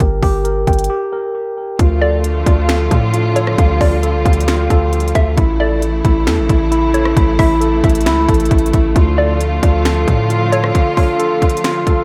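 A hard-clipped kick, sharp snare, crisp hats, finger snaps and rim clicks from an electronic trap kit sit up front in this brooding, menacing hip hop excerpt, played with a half-time feel. A worn, slightly out-of-tune tine electric piano runs arpeggios throughout, its clean tone softened by a low-pass filter and tape echo. Beneath it, a punchy, heavy 808-style bass with a sine body, fast attack and decaying tail pushes through until 10.7 seconds. After a brief break from 0.9 to 1.8 seconds, a lush bowed string section enters with smooth, vibrato-rich sustained chords as the harmony moves from G minor to D minor, then A and back to D minor. From 2.0 seconds a hollow, bouncy square-wave pluck adds a warbling, detuned second line high in the register, thickened by chorus and tape echo. A moderate plate reverb soaks the whole mix in a dreamy haze, and the track is cut from a longer piece.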